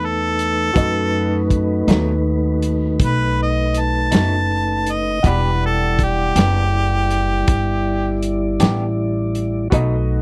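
Soulful and brooding, this slow 12/8 blues in E minor at 54 BPM moves from B7 to Em7 at 5.2 seconds, with an up-front, overdriven harmonica singing a jazz-style solo full of vibrato and scooped notes until 8.2 seconds over a soft, flute-like tonewheel organ with key click and slow rotary speaker, a worn, slightly detuned upright piano in the background, a woody pizzicato upright bass, a muffled, lo-fi soul drum kit with tight kick and medium-tuned snare, and a slightly broken-up, compressed electric guitar with tremolo entering at 1.9 seconds, all captured in a dry, close 1970s-style studio sound.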